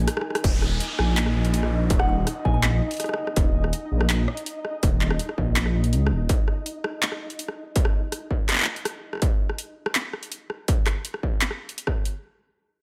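Lightly reverberant and heavy, this cinematic half-time drum and bass excerpt opens on a drum fill and a short break before the main section takes hold at 0.4 seconds. Up front, a deep, rumbling detuned saw bass beats with saturated darkness until 6.3 seconds. Beneath it, a pulsing, tempo-synced gated texture of detuned triangle tones drifts in, mellow and chorused, with its own reverb, and lingers until 9.2 seconds. The drums sit forward: a distorted electronic kick re-recorded in a small room, and a layered, overdriven kit of handclaps, rim clicks and bright hi-hats. An electronic downlifter falls early on, while a soft, pure FM bell briefly chimes behind the mix, its decaying notes coloured by chorus, phaser and dub echo.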